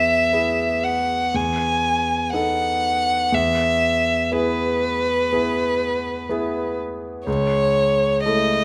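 Warm and serene, this romantic classical duo moves at 60 BPM in 4/4 with a flexible rubato feel in E major, its harmony shifting from E through B7/E and back to E before settling on A/C# near 7.3 seconds. A rich, expressive solo violin carries the melody up front with vibrato, soft bowed attacks and gliding portamento, while a clear, intimate grand piano accompanies up front across its low and middle registers, its natural tone revealing audible action noise. Close, detailed microphones capture both players throughout this 8.6-second fragment of a longer piece, set in the moderate reverb of a recital hall.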